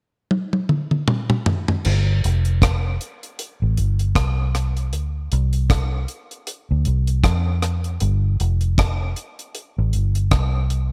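Bittersweet and longing, this lovers rock reggae excerpt moves at a relaxed 78 BPM in 4/4 with a swung sixteenth-note feel, tuned slightly below standard pitch. A deep drum kit opens with a fill from 0.3 to 1.8 seconds, using toms, crash, hi-hat, rim click and a tight kick, with dark cymbals and a gated reverb on the kit. At 1.9 seconds a vintage muted fingered electric bass joins up front, round, punchy and foam-muted in the low register, set in a dry room with little reverb.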